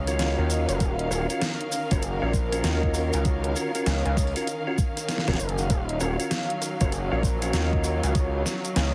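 A gritty, overdriven synth bass anchors this swaggering glitch hop excerpt alongside a knocking electronic kick from 0.8 seconds, a pop drum kit with a deep snare, grainy tube shaker, percussive tonewheel organ stabs through a fast rotary speaker, lush bowed string chords that pump with the sidechain, and an airy, breathy pad in the background, all over a single Ebm9 chord with a heavily compressed radio sound and light reverb.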